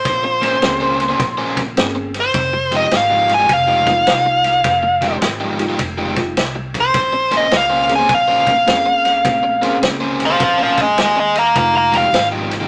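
This mournful, brooding electric blues shuffle at 104 BPM opens on a dark, smooth lead guitar with overdrive, sitting up front as it carries the melody over minor ninth chords. An upright bass with a woody, growly pizzicato tone, a vintage drum kit of tight kick, medium-tuned snare and dark ride cymbal, and a crunchy overdriven guitar riff enter within the first moments. A reedy, slightly out-of-tune electric piano joins at 0.6 seconds with worn accompaniment, all in a moderate studio reverb across this brief cut from a longer piece.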